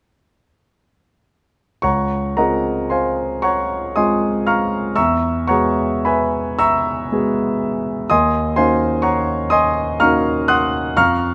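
Serene and hazy, this short passage of impressionist classical music is taken from a longer solo piano piece in Db major. A clear concert grand piano plays alone from 1.8 to 11.3 seconds, moving slowly in 6/8 at about 36-42 beats per minute on the dotted quarter, with a free, rubato feel. Its range runs from Db2 up to Gb6, pairing a deep bass with a natural tone and long sustain that lets the notes ring. The harmony drifts from Dbmaj7 to Eadd9 at 5.0 seconds and then to Ebm7, giving the music a softly floating colour. Close, detailed microphones keep the piano up front, while light reverb adds a gentle sense of space around it.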